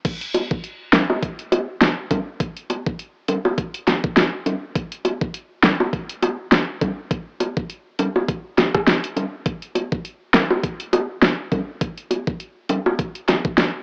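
An overdriven, layered electronic pop drum kit with a knocking kick, fat snare, rim clicks, hi-hat and crash opens this bouncy, sultry dancehall groove at 102 BPM with a swung 16th feel, joined at 0.3 seconds by round, low-tuned acoustic bongos played with soft hands, both sitting up front in a home-cassette, AM-radio sound with light reverb.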